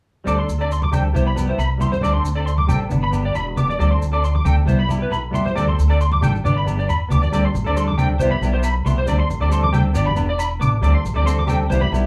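A straight, buoyant four-four groove carries this joyful, carefree highlife guitar band passage, cut from a longer piece. A woody, pizzicato upright bass on steel strings sits up front, while ringing agogo bells and grainy, mellow maracas, both close and dry, play from the start, and thick-skinned, medium-tuned congas join in the background at 0.8 seconds. A clean, hollow-body semi-hollow electric guitar picks out the accompaniment through a lush chorus. Above it, a bright, twangy electric guitar at the edge of break-up plays high arpeggios coloured by ensemble chorus and slapback echo. The chords cycle through D7sus4, Cmaj7 and G, with a second section beginning at 7.3 seconds, and moderate studio reverb and small room ambience give the band a sunny, intimate sound.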